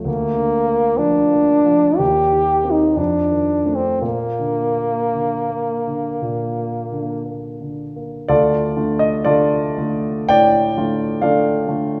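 A French horn with a soft attack, light vibrato and a vintage glow carries the melody up front from 0.1 to 7.2 seconds in this serene, romantic classical duo, moving with a free rubato feel. A dark, mellow concert grand with deep bass accompanies it throughout, playing on by itself into a new section that begins at 8.3 seconds and runs until the fragment ends at 12.0 seconds. The two sit in a wet stone room, and the recording is cut from a longer piece.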